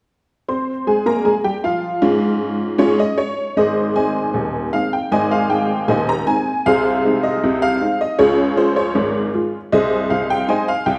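A honky-tonk upright piano carries this short ragtime fragment on its own, its detuned, jangly voice sitting up front from 0.5 seconds to 11.0 seconds. The mood is jaunty and playful, moving in a straight two-beat metre. The instrument has a bright, vintage, boxy character, spanning from deep bass notes up into the high treble. The harmony stays close to home, shifting between the tonic and the subdominant, with a new section beginning at 3.6 seconds. A wet reverb, like that of a church or concert hall, gives the old piano a lingering tail, and the passage is cut from a longer piece.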